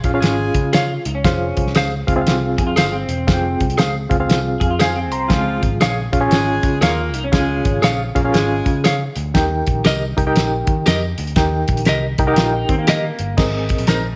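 A modest reverb and small-room ambience frame this joyful, uptempo 1960s-style soul excerpt at 119 BPM with a swung feel, built on a cloth-damped, thuddy drum kit with a fat snare up front, a round, foam-muted picked bass with tube saturation, a barky, overdriven reed electric piano pulsing with fast tremolo that takes a fill at 4.3 seconds, clean hollow-body guitar stabs with tremolo, a slightly broken-up, lo-fi guitar riff through a small old amp with analog chorus, a jingly tambourine in the background, and an edgy, close-miked saxophone section with light vibrato playing a second line that returns at 5.3 seconds, over chords moving from Db and Fm to Eb before landing on Abadd9 at 13.4 seconds.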